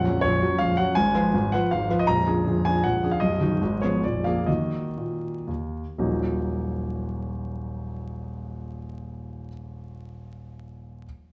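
Wistful and capricious, this short extract from a longer classical piece is a romantic dance in 3/4 for solo grand piano, set in E-flat minor. Its dotted rhythms and rubato give the pulse a restless give and take, with the tempo ranging from 115 to 172 BPM and a slowing from 2.6 to 6.0 seconds. The harmony passes through diminished and dominant-seventh colours before settling on E-flat minor at 4.5 seconds, and a new section begins at 6.0 seconds. The piano sounds intimate, natural and up front, covering a span from deep bass to the upper middle register, with its action noise clearly audible. A wet recital-hall reverb surrounds the instrument, while vinyl crackle lends the recording an aged patina.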